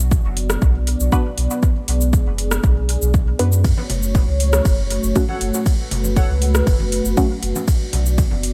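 Nocturnal and meditative, this short dub techno passage moves in a straight 4/4 over chords shifting from B minor to F# minor and back. A deep, overdriven electronic kick sits up front beside a round, soft sub bass with tube saturation, while a deep house kit of metallic hi-hats, ride, rim click and shaker adds its own overdriven grit, both kit and kick carrying the air of a large room. A dark, detuned analog pad holds sustained chords with chorus and sidechain pumping, and a muted, filtered chord stab enters at 1.1 seconds, its filter sweeping throughout as phaser and dub echo trail behind it. Very quiet congas join at 3.8 seconds, and a warbling, lo-fi synth keys riff with a nostalgic, mellow tone surfaces briefly at 5.3 seconds, echoing into the dry, close mix.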